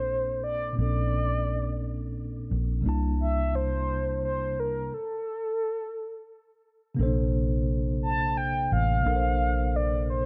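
A horn-like, warbling sawtooth synth lead with chorus and vibrato carries the melody up front over a mellow, clean tine electric piano and a dark, foam-muted fingered electric bass in this intimate, slow six-eight R&B cut from a longer piece, moving from Bbmaj9 to C13 before a stop from 4.9 to 7.0 seconds and a return to Bbmaj9 in a dry, close-sounding space.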